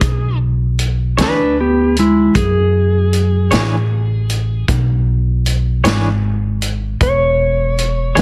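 This slow blues excerpt in 12/8 has a rollicking, gritty mood, resting on a single E13 chord throughout its 8.2 seconds. A clean lap steel guitar carries the melody up front as an electric slide solo, its dark, fingered tone shaped by volume swells and bathed in plate reverb. An upright bass sits equally forward with a woody, thumpy pizzicato sound from bright steel strings, while a vintage acoustic drum kit plays hi-hat, kick and snare a little further back, with a punchy kick, a medium-tuned snare and a rolled-off top. At 1.2 seconds a semi-hollow electric guitar joins as accompaniment, clean and compressed with a hollow-body warmth, tremolo and its own plate reverb. The whole mix has light reverb and a heavily compressed, radio-like sound.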